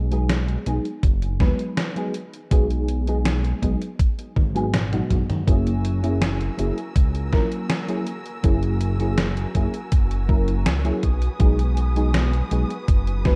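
Dark, warm digital ambience frames this woozy, faded vaporwave excerpt at 81 BPM in B major, where a round, phaser-washed FM electric piano and a glossy chorused synth bass sit up front from the start, a gated 80s drum machine with tape-tinged hi-hat, gated-reverb snare and toms plays alongside a thumpy electronic kick, a drum fill at 4.4 seconds leads into the second section, and a lush, bowed symphonic string section with vibrato, portamento and 12-bit sampler grit enters low in the mix at 5.5 seconds.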